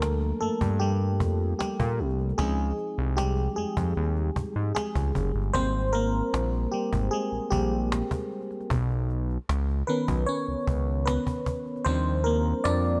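Close and intimate in a small room, this dreamy, smooth contemporary R&B fragment puts a glassy FM electric piano up front, its bell-like attacks treated with chorus and playing solo lines over lush major-ninth chords that move from a rootless Ebmaj9 through Dbmaj9, Abmaj9 and Bmaj9 before returning to Ebmaj9 at 11.9 seconds. A fat, detuned sawtooth analog bass with a filter sweep sits equally forward, sustaining its thick low notes beneath the keys. A snappy acoustic cajon, played with soft hands and miked close, keeps an unhurried pulse in the background.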